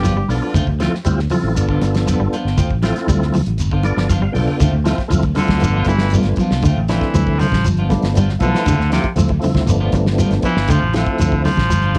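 A funky, defiant afrobeat groove at 118 BPM in D dorian opens with the rhythm section at once, rocking between G7 and Dm7. A fat, percussive tonewheel organ with key click, light overdrive, chorus vibrato and a slow rotary speaker carries the accompaniment. Beneath it, a round, dark fingered bass anchors the low end, and a dry 70s drum kit with a tight kick and thick snare carries a cassette-tape tone. Very quiet, bright congas and a grainy, mellow shekere fill out the percussion, while two clean picked electric guitars sit in the mix: one plays tremolo-treated background arpeggios and the other adds warm stabs through harmonic tremolo. The organ and drums each play a short fill just before 4.6 seconds, and a raspy, gritty baritone saxophone enters at 5.4 seconds with a punchy, forceful solo full of vibrato and vintage cassette grit. Light reverb and a homespun cassette sound shape this cut from a longer piece.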